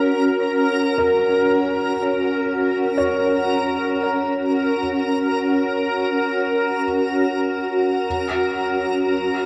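Ambient piece in free time and F# major, serene in mood, opening on F# with a cloudy, blurred granular pad holding sustained chords up front while a felt-muted upright piano plays soft, boxy arpeggios through a delay, its mechanical action noise audible. A reversed, detuned texture adds a bright, dreamy shimmer above, and the piano stops at 8.1 s as the harmony shifts to a rootless E over F#. The whole fragment sits in a wet cathedral reverb and carries the worn, warbling pitch drift of old cassette tape.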